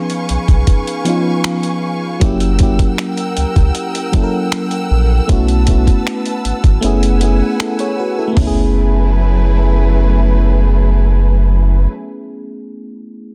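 A gritty, thumpy sampler-style drum kit of finger snaps, hi-hat, kick and toms drives this longing, sensual contemporary R&B excerpt at 78 BPM in F# dorian, with a round sine sub bass, a mellow FM electric piano and dark, woody bowed strings with sidechain pumping moving through C#7, F#7b9, B7sus4 and F#m11 in a dry, dense mix, the kick dropping out from 6.8 to 8.4 seconds and the drums stopping at 8.5 seconds.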